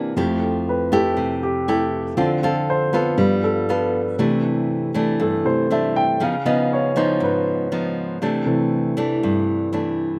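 Romantic and sophisticated, this bossa nova fragment is cut from a longer piece and moves in a straight four-four. A warm grand piano carries the solo for the full 10.2 seconds, its intimate tone marked by long sustain and the audible action noise of the instrument. Underneath, a fingerpicked nylon-string guitar plays classical-style accompaniment throughout, its fresh strings giving it a bright, acoustic sparkle. Both instruments sit up front in a dry, open-air sound with little reverb. The harmony glides through lush extended chords, from Fmaj9 and Dm7 through G9 to C69, then takes a colorful turn to Db9 at 6.2 seconds before settling back on C69.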